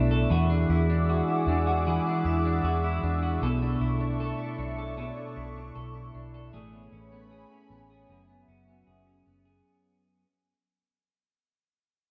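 A clean electric guitar, a phased analog pad and a muted fingered electric bass all sound together from the opening moment of this haunting, melancholic dream pop excerpt, cut from a longer piece and fading out across its whole length. The guitar sits up front, picking bright, twangy arpeggios soaked in lush chorus and digital delay. Beneath it, the dark, foam-muted bass holds a round, amped low line, also placed close. The pad is mixed further back, a swirling, evolving blend of detuned sawtooth and square waves with a sub octave, slow attack and long release, moving through phaser and chorus as it sustains chords from E9 to Bm11, Amaj9 and F#9sus4. A wet hall reverb and a dark, warm production cloak the whole, and after pad and bass stop at 9.6 seconds, the guitar carries on alone until 10.2 seconds.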